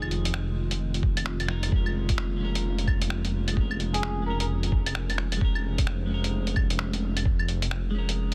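Rainy and ghostly, this future garage excerpt swings at 130 BPM over Fm7 and Bbm7/F, with a deep, rumbling detuned saw bass up front, a twangy clean electric guitar drenched in lush chorus and tape echo, a warbling, nostalgic pad in the background, muffled sampler-style claves, finger snaps and hi-hat, a thumpy electronic kick from 1.0 to 7.4 seconds, and a breathy cup-muted trumpet slipping in briefly at 3.9 seconds, while the bass, guitar and pad pump against a dry, dense, heavily limited master.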